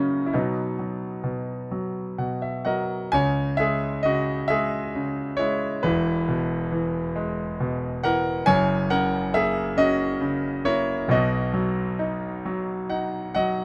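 Closely miked and lightly reverberant, this short excerpt of a lyrical classical solo features a bright concert grand piano, its brilliant, polished tone sitting up front with deep bass and short sustain. In a rubato 6/8 lilt, the melancholic, dark music moves through B, C#m, E and F# harmonies, with brief piano fills at 1.7 and 12.4 seconds.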